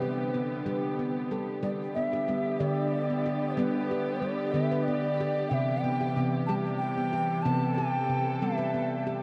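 Meditative world music with a gentle, dreamy mood at 62 BPM in a straight 6/8 in G major, in which a bright, ringing nitrided-steel handpan sits up front with sharp finger strokes on arpeggios, a pure, reedy bass bansuri with crisp attack and vibrato carries the melody through shimmer reverb and delay, and a dark, veiled con sordino string section holds distant bowed chords beneath, all afloat in a vast, echoing space of huge reverb as the harmony shifts from G to C at 5.5 seconds in this short cut from a longer piece.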